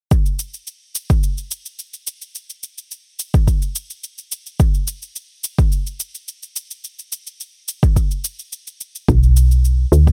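A deep, up-front electronic kick drum sets a straight, steady pulse in four, with a faint produced cabasa sitting far beneath it throughout this hypnotic, earthy organic downtempo excerpt. Near the end, at 9.1 seconds, a woody FM bass arrives low and mellow, its round, fast-attack notes decaying softly and pumping from sidechain compression. The dry sound carries little reverb.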